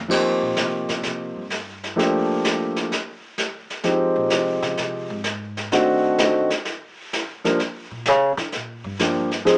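Swinging, sophisticated jazz piano trio fragment in which a woody pizzicato upright bass takes a solo from 0.1 seconds, set against an intimate, up-front concert grand piano with audible action noise and long sustain, and a distant, roomy brush kit with dark cymbals and a boomy kick, all heard through moderate club reverb and a small-speaker sound as the chords move from Eb69 through Gm9, Fm9 and D7b9 to Gm.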